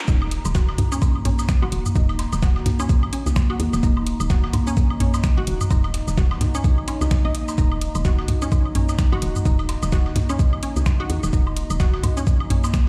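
A swung sixteenth-note groove in 4/4 drives this sparse, quirky minimal techno excerpt. An overdriven, knocking electronic kick sits up front, layered with a garage kit of finger snaps, metallic hats and shaker that also carries overdrive. A dusty soul sampler-style kit sits in the background, its gritty hats and fat snare re-recorded in a large room, while electronic woodblock and toms add tape-warm accents from 0.2 seconds. Underneath, a woody, round FM bass with a fast attack and dark decay pumps with the sidechain. A juicy, squelchy resonant blip pluck plays a detuned riff through chorus and dub echo. Meanwhile, a warbling, nostalgic lo-fi pad holds a sustained, slow-blooming texture from the very start, and the whole track sounds as if played on a big sound system in a bare room with large studio reverb.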